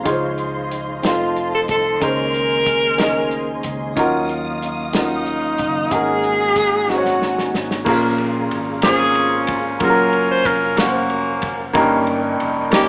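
A subtoned tenor saxophone with vibrato carries the melody from 1.1 s in this soulful, reverent slow gospel piece at 62 BPM in 6/8, before a clear, soft-attacked saxophone section takes over at 8.8 s, over a woody upright piano, a mellow, flute-like tonewheel organ through a fast rotary speaker, lush bowed strings that drop out at 7.9 s, a round, punchy fingered bass, and a dry, muffled soul drum kit whose fill leads into the second section, the band captured live in one room with a moderate studio reverb and a small-speaker sound.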